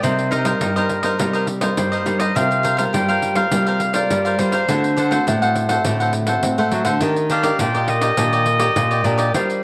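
Lively yet bittersweet, this short cut from a longer samba and choro piece features a bright, vintage-toned clarinet soloing in classical style over chords moving from Cm7 through C7sus4 and D7 to Ebmaj7. A crisp, picked cavaquinho and a full-bodied, up-front fingerpicked nylon-string guitar supply the accompaniment, while a darker second nylon-string guitar carries the bass and a jingly pandeiro played with soft hands adds percussion. Light reverb and small room ambience give the acoustic ensemble an intimate feel.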